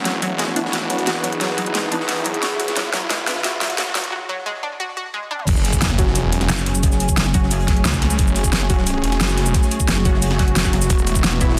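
This cut from a longer dark, technical drum and bass track opens at 177 BPM in F# minor with a growling, detuned saw bass snarling in the background, a rising effect and a warbling, lo-fi tape-like pad that pumps with the sidechain. Almost at once, dark, bowed studio strings hold sustained chords with light vibrato, a round analog pluck spins chorused, delayed arpeggios under a filter sweep, and a bold, orchestra-hit-like synth stab cuts in, also swept. A very quiet, gritty breakbeat kit and an overdriven dubstep kit with a huge, up-front snare, cabasa, crash, hats and toms carry a fill through the tense build-up, which gives way to a short break. At 5.5 seconds the drop lands on F# minor with an impact and a knocking, overdriven electronic kick, while the arpeggio has already stopped. The stabs return at 6.0 seconds, and heavy, pulsing pluck wobble bass on F#1 surges in twice, first at 6.5 seconds, all wrapped in light digital ambience and a dense, heavily limited modern master.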